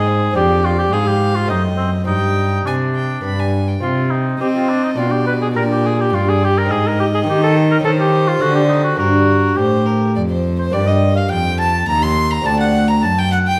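Introspective and flowing, this is a cut from a longer baroque-style sonata movement in triple time, with four players heard together from start to finish. A single bowed violin, gut-strung and period in style, carries the melody with a close, reedy richness, while an oboe sounds a second line from a roomier, more distant place, though still set up front. Beneath them, a fingerpicked lute with doubled gut strings, some tuned in octaves, gives delicate acoustic accompaniment, and a bowed cello holds the bass with its own gut-string depth, the most forward of the instrumental parts. The harmony is restless early on, leaning on diminished and suspended chords before settling, and the music moves into a new section at 10.7 s that turns toward a dominant seventh near the end. A wet recital-hall reverb surrounds the ensemble, giving the whole performance a resonant, lingering glow.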